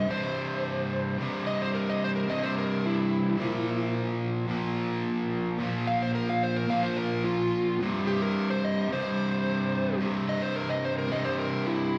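A straight, driving 4/4 rock groove anchors this raunchy excerpt. Up front, a cranked stack guitar plays a picked, double-tracked riff low in its register, warm and overdriven with slapback echo, moving from C5 to Bb5 and back to C5 at 7.8 seconds, while an overdriven slide guitar carries a dark, fingered melody above it with its own slapback echo. Both guitars play throughout, heard as a live club gig through the venue's PA and bathed in a lush hall reverb.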